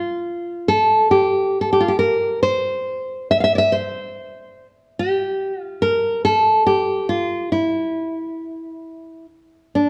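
Mournful and haunting, this short Celtic folk fragment, cut from a longer piece, features a solo nylon-string guitar played up front in a slow, rubato 6/8 at around 44-49 BPM and tuned to A4 = 435 Hz, its fresh strings sounding full-bodied and classical as it is fingerpicked between D4 and F5, with audible finger squeak, all set in a dark production with moderate scoring-stage reverb over its 9.9 seconds.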